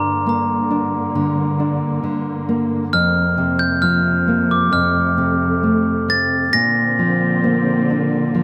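This children's lullaby moves at a gentle 67 BPM in 4/4, with a rubato feel that gives its 8.4 seconds an innocent, tender air; it is cut from a longer piece. A glockenspiel struck with soft plastic mallets carries the melody high above, its bell-like ringing tone sitting dry and up front. Beneath it, a fingerpicked nylon-string guitar supplies a full-bodied, deep classical accompaniment, with a touch of finger squeak audible through the close, detailed microphones. A muted studio string section, bowed con sordino, holds veiled, dark sustained chords with vibrato and a smooth top, sitting lower in the mix. The harmony moves from Gm to Fsus4 at 2.9 seconds, resolves to F, and settles on Bbadd9 at 6.5 seconds, all wrapped in light reverb.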